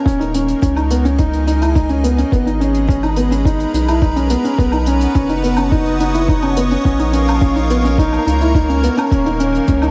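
Bathed in a moderate recital-hall reverb, this moving, melancholic piano-and-strings electronica excerpt at 106 BPM in G# minor sets an intimate, boxy felt-muted upright piano riff, with audible action noise and delay, over a lush, detuned sawtooth pad that fades in from the start with chorus and sidechain pumping, a round, deep analog bass that also pumps, a muffled, overdriven sampler-style kick, and an acoustic brushed hi-hat and woodblock, moving through D#7sus4, G#m, Bmaj7, A#m and D#7(no3).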